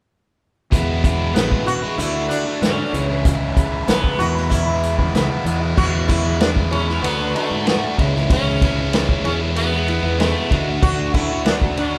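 Psychedelic rock in E mixolydian at 95 BPM, this hazy, trippy excerpt from a longer piece moves in a straight 4/4 through chords of E, D and C#m. An overdriven electric guitar, double-tracked and up front with a phaser, carries the riff from 0.7 seconds, while a fuzz-laden fingered electric bass, punchy and overdriven, holds down the low end alongside it. A vintage acoustic drum kit with dark cymbals, a medium-tuned snare and a tight kick plays crash, ride, hi-hat, snare and kick, its top rolled off for a warm, natural studio-room tone. At 1.3 seconds a bright, buzzing sitar enters with the melody, its plucked tone shimmering with sympathetic strings. The second section begins at 5.8 seconds, and the whole band sounds as if playing live together in one large studio with a moderate reverb.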